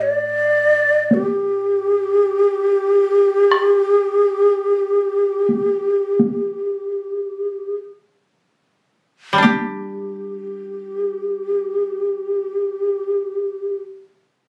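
Captured on a phone in the room, this excerpt carries a light club reverb around instruments that all sit up front. It is austere, still Japanese chamber music in 4/4, played rubato at a very slow 34 to 55 BPM and tuned to A4 = 443 Hz, with the pace slowing down through its opening passage until a new section begins at 9.4 seconds. A breathy, hollow shakuhachi carries the melody between G4 and D5, its end-blown bamboo tone mellow and soft in attack, shaded with vibrato. Beneath it, a koto played with fingerpicks gives a dry, woody accompaniment from A2 up to G4. Solo taiko drums struck with heavy sticks enter at 1.1 seconds and stop at 10.3 seconds, their acoustic sound compressed and saturated.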